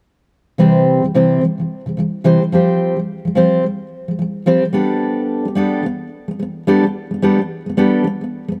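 Heartfelt and sunny, this gently swung pop excerpt centres on a lone fingerpicked steel-string acoustic guitar with a full-bodied jumbo tone, placed up front in a light reverb as it moves through C, Fsus2 and Gadd9 from 0.6 seconds on.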